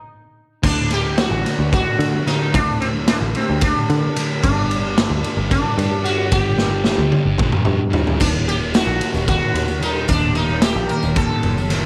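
A buzzing, shimmering sitar carries the melody from the very start, its bright plucked notes trailed by a slapback echo and ringing sympathetic strings. This short cut of dark, mysterious psychedelic rock runs in an odd 7/8 metre, and the band crashes in at 0.6 seconds after the sitar's brief opening alone. A thick, double-tracked fuzz guitar grinds out the low riff through distortion and a phaser, while a round, foam-muted picked bass sits dark and punchy beneath it. Up front, a raw garage drum kit with a punchy kick, gritty saturated tone and rolled-off top pumps in a bright stone room, working crash, ride, snare and toms. The chords move from D to G5, and the drums add a fill just before the harmony lands on Eb5. At 8.2 seconds a very quiet, jingly tambourine joins in the background, and the whole recording stays dry and close.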